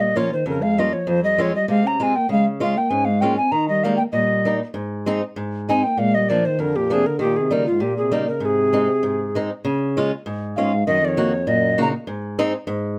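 In a straight 2/4 at 98 BPM, this jolly, festive alpine folk tune, cut from a longer dance-band piece, moves from Ab major into Db major at 9.6 s. A hollow wooden alto recorder carries the melody up front, its pure tone marked by tongued notes, chiff, vibrato and rolled-off highs. Beneath it a mellow, close-miked euphonium plays a second line in a classical style with light vibrato. A fingerpicked acoustic guitar gives a boxy, swing-style accompaniment up front, with finger squeak audible. The recorder and euphonium stop at 11.9 s, leaving the guitar alone until 13.0 s, all inside a moderate studio reverb.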